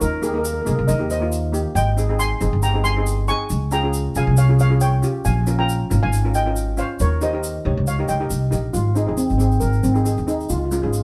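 A lightly swung sixteenth-note pulse at 137 BPM in 4/4 drives this bouncy, festive calypso in Ab major, a short fragment lifted from a longer piece. A lead steel pan carries the melody up front, its mellow, dark tone shaped by soft rubber sticks into a smooth, shimmering line. A second pan, a double seconds played with hard rubber sticks, joins at 0.2 seconds with an accompaniment that sounds metallic and boxy, as if caught in a small room. Underneath, an upright bass with steel strings sits prominently, plucked pizzicato with a woody, thumpy weight, while a grainy, bright tube shaker ticks quietly in the background. The harmony moves from Ebsus4 through Abmaj7, Db, Bbm7 and Eb7 before settling on Ab at 8.7 seconds, and light reverb gives the sense of a band playing live together in one room.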